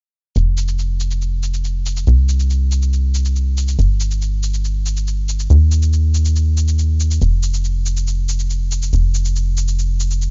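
The recording has a digital ambience and a rolled-off top end, with nothing above 7.5 kHz. This is a cut from a longer uplifting trance piece at 140 BPM in a straight 4/4, tuned to A4 = 442 Hz, with a bittersweet, soaring mood. A tight sequencer bass carries the track from 0.4 to 10.3 seconds, running between F1 and Eb2. It blends sawtooth, square and triangle waves into a detuned, dark, punchy filter pluck with a fast attack and decaying tail, sitting up front with tube saturation. An electronic, layered shaker plays alongside it over the same span, overdriven and low-pass filtered, and sits much farther back in the mix.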